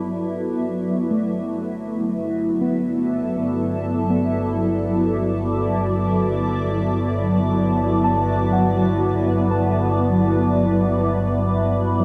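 Weightless and warm, this dreamy ambient excerpt rests on a single Gmaj7 chord: an ethereal pad sits up front, sustaining chords through chorus, phaser and its own reverb, while a bowed double bass section fades in on a low G with smooth vibrato, and muted, felt-like synth keys join at 1.1 s with soft, decaying arpeggios through chorus and tape echo in the background, all soaked in plate reverb.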